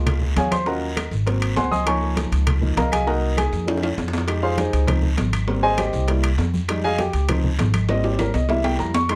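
An intimate grand piano with audible action noise leads this fiery, sophisticated Afro-Cuban jazz excerpt at 199 BPM, settling into F minor at 4.3 s over a growly steel-string pizzicato upright bass up front, ringing metal-shell timbales, bright thin-skinned congas, tight high-tuned bongos, woody claves and a raspy guiro in a dark, moderately ambient studio sound, with drum fills at 3.7 s and 7.9 s.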